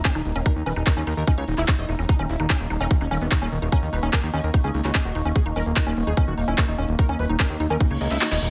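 A tight, up-front electronic kick drives this intense psychedelic trance excerpt at 147 BPM alongside a punchy big-room dance kit with crisp hats and handclaps, a fat sawtooth analog bass with a filter sweep, a woody wave-folded pluck riff carrying chorus and dub echo, a dark detuned unison lead with phaser and sidechain pumping in the background, a warbly lo-fi tape-like pad, and a very quiet overtone-sweeping drone, all in a dry mix until a reverse cymbal rises at 8.0 seconds and the kick drops out for a drum fill at 8.2 seconds.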